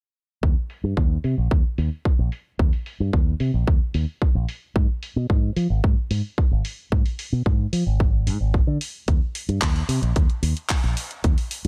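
A straight groove in 4/4 drives this feel-good, groovy nu-disco excerpt. A punchy, up-front electronic kick starts at 0.4 seconds, joined by a lower-set house kit whose handclaps and hi-hats, both re-recorded in a small room, sit behind low-pass filters on the hats, snare and room. The fingered electric bass carries the track with a bright, direct-amped tone shaped by an envelope filter and a filter sweep, all in a dry mix with little reverb.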